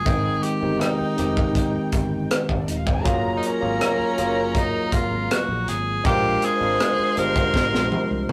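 A tight funk drum kit with a high-tuned snare lays down a straight, unhurried 80 BPM groove in 4/4 for this lush 1970s-style soul fragment, with a growly, bright fingered electric bass underneath and a drum fill closing it from 7.5 seconds. Up front, a barky, lightly overdriven tine electric piano supplies the harmony over Abmaj7, Gbmaj9 and Bb7, while an edgy, forceful tenor saxophone with vibrato carries the melody. A dark, intimate string section bowed sul tasto with a soft attack adds a second line, and the rough rehearsal-room sound brings moderate reverb and saturation.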